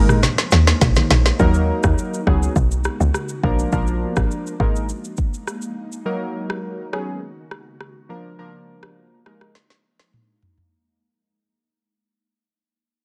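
Mellow and hypnotic, this short afrobeats excerpt at 103 BPM sets round, chorused analog keys and a punchy, woody log drum bass up front over a gritty electronic afro-pop kit with a deep kick, while low-tuned congas appear only from 0.2 to 1.1 seconds, an ethereal, phaser-washed pad with sidechain pumping hangs in the background, drum fills mark the opening and the close, and a fade-out runs from 1.4 seconds over chords cycling through Absus2, Ebm, Db7sus4 and Bb.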